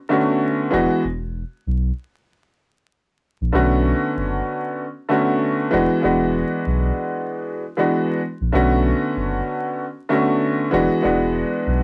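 This is a moody, dark boom-bap hip-hop piece at 96 BPM in 4/4, with a 16th-note swing of 58% and tuning set to A4 = 444 Hz. A clear, woody upright piano enters at 0.1 seconds as the accompaniment. It sits up front with long sustain and a slightly detuned character, filtered at both ends and colored by cassette tape. At 0.7 seconds a deep, round dub sub bass joins underneath, with a soft triangle-and-square-wave tone, a fast attack and sustained notes thickened by tube saturation. The harmony alternates between Bm9 and E9 throughout, and a break arrives between 1.0 and 3.5 seconds. The whole fragment has a moderate studio ambience and the hazy feel of a home cassette recording, with vinyl crackle running beneath it.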